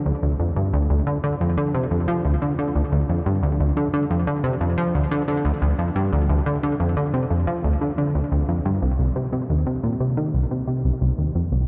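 A straight 4/4 pulse at 89 BPM anchors this cosmic, expansive ambient fragment, cut from a longer piece and tuned to A4 = 437 Hz. A plucky analog bass plays alone for the full 11.7 seconds, ranging from C2 to F3, its punchy, funky sawtooth and pulse-wave tones shaped by ring modulation and a fast-attack filter pluck that decays. The bass sits up front with delay, set within a vast, echoing space whose huge reverb trails for 7.9 seconds.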